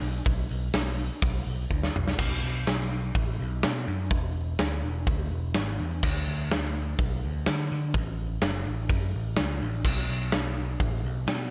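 A growly, overdriven picked electric bass and a huge arena drum kit start together at 0.0 seconds, setting a menacing, heavy hard rock mood in a straight four-four pulse. The bass sits low and bright with an amped edge. The acoustic kit sounds natural and up front, with a punchy kick, a medium-tuned snare, hi-hat, crash cymbal and toms, all carrying the big-room size of an arena. A drum fill at 1.7 seconds leads into a new section at 2.2 seconds, where the two parts push on through the rest of this fragment cut from a longer piece. The mix is dry, with little reverb, so the bass and drums land with blunt weight.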